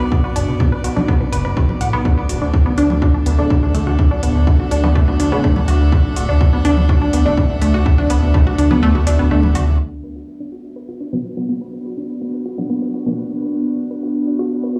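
A fat, detuned sawtooth bass drives this dark, dramatic melodic techno fragment at 124 BPM in B minor, pumping under lush unison pluck arpeggios with digital delay, a reedy gut-string chamber section, a punchy tape-toned kick and metallic hats with congas, while muted dub chord stabs with 12-bit grit cut in at 3.4 seconds; the kick drops out at 8.8 seconds, the stabs return at 11.1 seconds, and a deep, moody chorused pad enters at 11.6 seconds under a filter sweep, all set in a large reverberant room.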